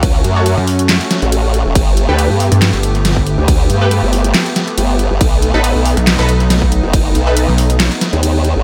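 A digital ambience surrounds this heavy, chaotic stretch of half-time wobble dubstep at 139 BPM in 4/4, cut from a longer piece and moving through F#m, Gadd9 and B7 with a light 16th-note swing. Up front, a compressed formant-sweep wobble bass with chorus and overdrive drives the low end, while a saturated, mellow pluck wobble bass pulses in from 0.6 s to 3.4 s and again from 6.0 s to 7.9 s. Alongside a lush supersaw pad that pumps against the sidechain through a low-pass filter, an overdriven punchy kick and a kit with a deep snare, handclaps, hi-hat and crash sound re-recorded in a small room, and bold orchestra-hit-like stabs with phaser, tape echo and reverb flash in the background.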